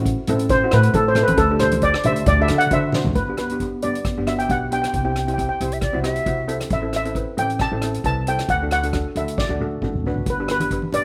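Dry and open, this outdoor recording carries little reverb and sits in G major, tuned slightly flat with A at 437 Hz, in a passage cut from a longer piece. It is a bouncy, sunny calypso at 135 BPM in 4/4 with a light sixteenth-note swing. An up-front lead steel pan with medium rubber sticks carries the shimmering melody, while cello pans struck with hard rubber sticks add bright, metallic accompaniment, both touched by slapback echo. Below them, a woody, dark pizzicato upright bass with steel strings moves through Am, Dsus4 and D before settling on G, C and Amadd9. A soft-mallet drum kit with a fat snare and boomy kick plays fills around 2.9 seconds and again near the close, and low-tuned, damped congas sit in the background, dropping out and returning at 10.6 seconds. At 5.6 seconds, a silver concert flute with gentle vibrato and a soft attack adds a brief, airy second line with its own slapback echo.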